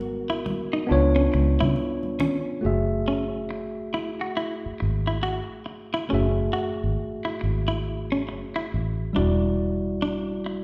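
A round, foam-muted fingered electric bass sits up front in this sultry, late-night R&B and neo-soul cut, moving at a slow 69 BPM with a swung 16th feel in F# minor, while a worn, slightly out-of-tune tine electric piano carries the chords from G#m9 and C#7b9 into a long stretch on F#m9 before turning to Em9 at 9.1 seconds. A dark, compressed clean electric guitar with spring reverb plays a second line from 0.3 seconds, and bright, damped congas with a thin skin and hard hands sound only until 2.4 seconds. The whole cut sits in a wet recital-hall reverb, giving it the air of a church or concert hall.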